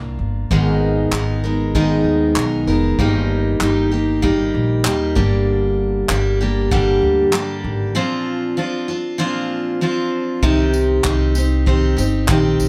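Lightly reverberant, this sunny, easy-going acoustic pop excerpt at 97 BPM swings gently in 4/4, with an up-front, full-bodied picked jumbo steel-string guitar carrying the chords over a woody pizzicato upright bass, while a distant, roomy unplugged kit played with bundle sticks adds handclaps, tambourine and a tight kick from 0.5 seconds, moving through Abmadd9, Eb/G and Gm to a break at 8.0 seconds before settling on Cm.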